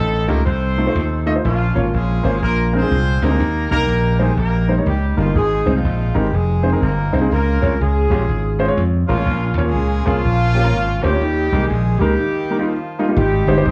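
Hopeful and soulful, this uptempo gospel excerpt swings along in 4/4, with a mellow horn section carrying the melody in octave doubling, its light vibrato sounding distant and roomy yet still up front. A bright, punchy slap bass drives underneath, while a baby grand piano with natural, short-sustain tone enters at 0.3 seconds to fill in the harmony, moving from F7 through Bbm, Eb and Db toward a brief break at 12.2 seconds that resolves on Abmaj7. The band plays live in one room, bathed in a moderate large-studio reverb.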